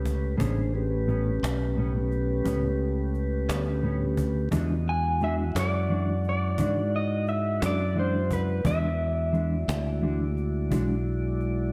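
A slightly broken-up, lo-fi lead guitar through a small old amp enters at 4.9 s with spring reverb and slapback echo, picking a melody over a laid-back, rollicking slow blues in 12/8 at 58 BPM, while a flute-like tonewheel organ holds soft chords through a slow rotary speaker, a bright, up-front fingered electric bass anchors the low end, a dark, compressed clean guitar adds harmonic-tremolo accompaniment, and a snappy cajon with snares keeps time, all moving from A9 to E9 inside a lush hall reverb that gives this cut from a longer piece a big arena sound.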